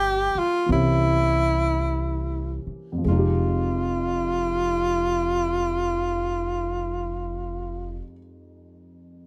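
Jazz ballad fragment in F minor at a slow 47-56 BPM with a swung feel, intimate and smoky, where a breathy, clear tenor saxophone sits up front with vibrato and scooped notes over a dark, mellow concert grand piano and a woody pizzicato upright bass in light reverb, the tempo slowing through the opening 3.0 seconds as Gm7b5 and C7b9 resolve to Fm9, before the saxophone and bass stop at 8.0 seconds and the piano carries on alone until 9.3 seconds.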